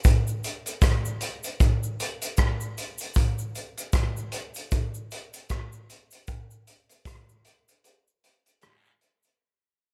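A vintage drum kit sits up front in this laid-back, meditative reggae fragment at 77 BPM with a swung sixteenth feel, its tight kick, hi-hat and rim clicks sounding roomy and dry with a rolled-off top, while a compressed, saturated cabasa and guiro stay in the background as the whole clip fades out and breaks at 7.8 seconds.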